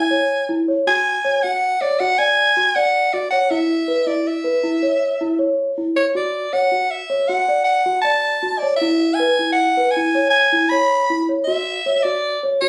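Hopeful and shimmering, this short excerpt of contemporary chamber music moves in an uneven 7/4 at 158 BPM in D lydian, cycling through chords such as Dmaj7, E6 and C#m/E. A growling soprano saxophone carries the solo melody up front from start to finish, its close-miked, raspy tone shot through with vibrato, subtone and scooped notes in a jazz style, while a celesta plays bell-like, delicate arpeggios with soft felt hammers. The sound sits in moderate studio ambience with reverb and compression, and has the slightly informal character of a phone recording made in the room.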